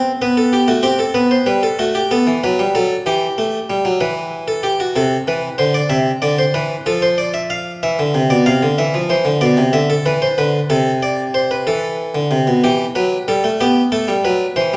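A solo harpsichord of the Flemish style, plucked on one set of strings with a round, warm tone and placed up front, carries this contemplative yet driving baroque-style two-part invention in a straight 12/8, moving through minor-key harmonies across a 14.8-second excerpt cut from a longer piece and set in the wet, lingering reverb of a recital hall.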